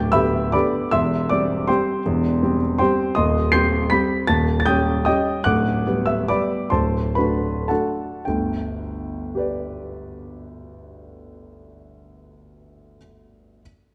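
Graceful and sparkling, this short classical piano waltz in 3/4 moves with a free, rubato feel, drawn from a longer piece and lasting about 13.6 seconds. A solo concert grand sits up front with an intimate, natural tone, deep bass, short sustain and audible action noise, ranging from D1 to C7 through chords that pass from G to C/E, Cm/Eb and Eb7 before settling through D7 back home. The music slows from 4.9 to 8.3 seconds into a new section, and a moderate concert hall reverb surrounds the dark, warm production.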